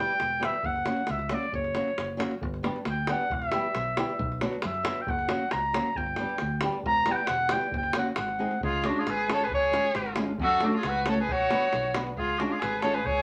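A clear, vintage-toned clarinet opens this excerpt of Balkan wedding-band folk, taking a classical-style solo up front over a dark, fingerpicked flamenco guitar, whose finger squeaks are audible, and a bright, foam-muted electric bass played with the fingers. A tight, close and dry davul joins almost at once, holding a straight 2/4 pulse at 135 BPM. The mood is bittersweet and fiery, set in F# phrygian dominant with chords moving through Em, F#, G and Bm before a G#7 leads to a shift into C# phrygian dominant at 8.6 seconds. At that point a boxy, smooth bowed violin enters up front as a second line, a single player with light vibrato and an even tone, alongside the clarinet until the cut at 13.2 seconds. The band sits in a wet studio ambience with a short decay.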